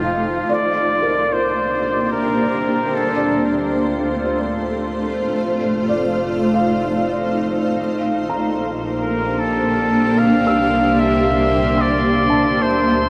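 This melancholic, reflective ambient passage sits in a vast, echoing space, its huge wet reverb blurring every edge, and it is cut from a longer piece, moving at 74 BPM in a straight 3/4. A bright, cloudy granular pad sits up front for the whole span, its detuned sine and sawtooth layers evolving through chords of C9, Dm7, F7 and Bb69. A clear, vintage-toned flugelhorn carries the solo melody with light vibrato in a classical style, heard from the start until 4.9 seconds and again from 9.0 seconds, its phrases trailed by tape echo. Behind it, a felt-muted upright piano plays soft, dark arpeggios with audible action noise, also touched with tape echo. A rich bowed double bass section fades in from 0.5 seconds, its focused, vibrato-laden tone anchoring the low end. At 10.7 seconds a glassy, drifting harmonics texture emerges in the background on a single high C, its calm overtones softened by chorus.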